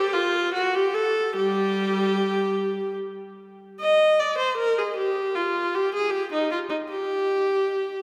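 A rubato 3/4 pulse at around 72-80 BPM carries this grave, flowing baroque-style suite movement for unaccompanied viola, cut from a longer piece and tuned to A4 = 439 Hz. A single bowed viola sits close and up front, its rich, smooth tone touched with light vibrato and even in its playing as it moves between G3 and Eb5, with the opening phrase heard again from 3.8 seconds. A wet church reverb with a long 3.4-second decay surrounds the instrument.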